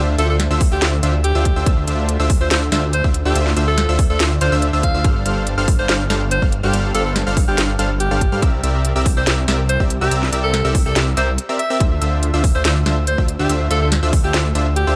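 Bittersweet and dreamy, this future bass excerpt at 142 BPM in a half-time 4/4 feel in D minor sets an edgy, vibrato-laced alto saxophone melody over a punchy supersaw stab riff with cassette-tape colour, high background unison pluck arpeggios with delay, a thick, chorused detuned saw bass, a hard-clipped electronic kick up front and a trap kit of sharp snare and crisp hats. Sax, stab, pluck and bass all breathe with sidechain pumping through digital ambience, moving from Dm7 through G9sus4 and C7 before a brief break at 11.4 seconds returns it to Dm7.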